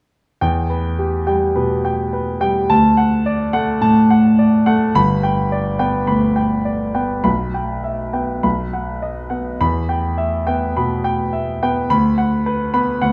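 Stormy and passionate, this classical virtuoso piano study unfolds with a free, rubato feel in common time. A grand piano plays alone from 0.4 to 13.1 seconds, its tone natural and up front, reaching from G1 in the deep bass to B5 high in the treble. The harmony moves from E minor through D and G, passes through a B major chord, returns to E minor and closes on B minor. A large, wet studio reverb gives the instrument a generous room around it. The passage is cut from a longer piece.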